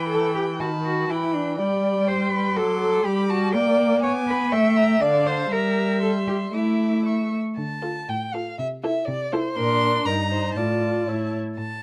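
A focused, up-front cello carries the bass line with vibrato in this dramatic, stormy classical-period movement for string quartet, a quick, rubato passage in 2/4 cut from a longer piece. Above it, the first violin sings the melody with a warm tone, portamento and expressive vibrato, while the second violin adds an even, smooth second line and a rich viola fills the accompaniment with soft attacks and sliding portamento. Light reverb and a dark production give the bowed strings a shadowy, stormy depth.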